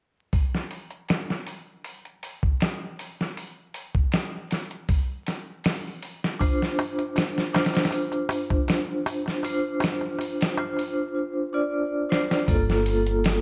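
A gritty, sampler-style drum kit sits up front in this hypnotic, brooding trip hop piece, its thumpy kick, medium-tuned snare and hi-hat dulled by low-pass filtering and a tape-like, compressed grit that suggests a re-recording in a large room. At 6.4 s a bright, metallic vibraphone arrives on a Dm7 chord, its ringing tones colored by fast motor tremolo, tape echo and the same 12-bit crunch. A dry, close-miked clay darbuka joins it at that moment, struck with hard hands and sitting low in the mix. After a drum fill at 12.1 s, the harmony moves to Gm9 and a woody, growly pizzicato upright bass lands on a deep G at 12.5 s, just before this fragment of a longer piece cuts off. Vinyl crackle and small room ambience hang over the whole passage.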